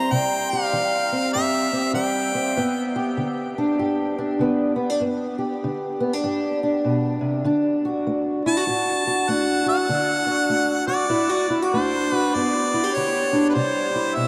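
A bright, close-miked harmonica sits up front in this swaggering, laid-back acoustic country blues. It plays a jazz-style solo with light vibrato, scooped notes and tape echo from 0.0 to 2.9 seconds and again from 8.5 seconds. Alongside it, a boxy parlour steel-string guitar, also up front, fingerpicked and treated with analog chorus, carries the accompaniment throughout at a swung 98 BPM in G major, moving through C, G and D, while a huge ambient reverb and vinyl crackle give this short cut from a longer piece its dreamy feel.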